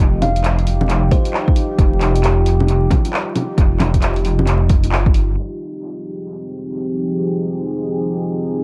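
A rumbling, detuned saw bass pumps with sidechain for the first 5.4 seconds of this nocturnal, rainy future garage excerpt at 134 BPM in F minor, swung on the sixteenths beneath a deep, moody sawtooth pad that pumps as well. A punchy electronic kick and a deep house kit of dark, low-passed hats, handclaps and bongos with dub echo drive the groove, while a soft, woody kalimba rings briefly through tape echo in the background. When the harmony shifts from Ebadd9/F to Fm7, the pad holds alone under a filter sweep until 8.6 seconds, and the whole mix sits in vinyl crackle, heavy echo and light reverb.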